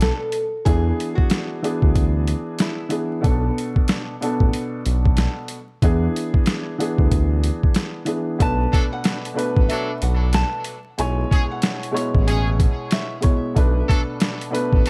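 Boom-bap hip-hop at 93 BPM in B dorian with a dark, tough mood and a swung 16th-note feel, built on gritty, pitched-down sampler drums with a thumpy kick and a smooth sawtooth synth bass, under a woody, slightly detuned upright piano with cassette-tape coloring, while a small fingerpicked nylon-string guitar melody with delay appears at the start and returns at 8.4 seconds, joined at 8.7 seconds by tight, jazz-style trumpet section stabs, the mix framed by studio reverb and vinyl crackle.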